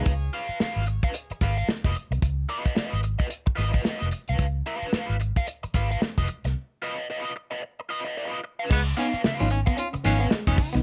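Strutting and playful, this funk excerpt moves at 111 BPM in 4/4 with a swung sixteenth-note feel, sitting in D-flat mixolydian around a Db9 chord. A dry, muffled soul drum kit with dark cymbals and a tight kick sits up front beside a round, punchy, foam-muted fingered bass. A crunchy overdriven guitar with wah plays accompaniment from the start, while a second, slightly broken-up and compressed guitar through a small old amp is heard only briefly at the opening, set in the background. After a break at 6.5 seconds, a new section arrives at 8.7 seconds, bringing that background guitar's riff back alongside reedy electric piano stabs shimmering with fast tremolo. At the same moment a breathy, whispered baritone saxophone with vibrato takes up a soft, intimate second line, the whole sound framed by light reverb.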